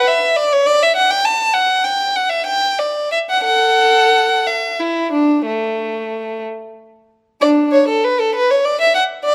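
A lone violin opens at 0.0 seconds, bowed by a single player and placed up front, with a warm tone and a smooth top as it moves between A3 and A5. This is a baroque-style suite movement for unaccompanied violin in D major, tuned to A4 = 445 Hz, with a dance-like, flowing mood. It moves in 12/8 at roughly 58-68 BPM counted in dotted quarters, and the rubato lets the pulse breathe freely. The playing is expressive, colored by vibrato and portamento. Close, detailed microphones and light reverb capture the instrument intimately, and at 7.4 seconds the opening material returns before this cut from a longer piece ends at 9.3 seconds.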